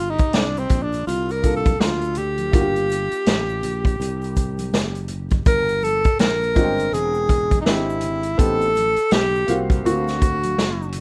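A breathy alto saxophone leads this cool, mellow jazz-hop excerpt at 82 BPM in G minor, its close-miked, whispered subtone and vibrato sitting up front with a touch of tape echo over a swung vintage drum kit with a punchy kick and rolled-off top. A growly, sustaining fretless electric bass plays from the start, very quiet egg shaker and congas arrive with the drums at 0.2 seconds, and a woody, boxy upright piano enters at 1.4 seconds as the chords move from Gm7 to a second section at 5.5 seconds through E7alt, Am7b5 and D7alt. The dry, rough home-demo mix carries a layer of vinyl crackle.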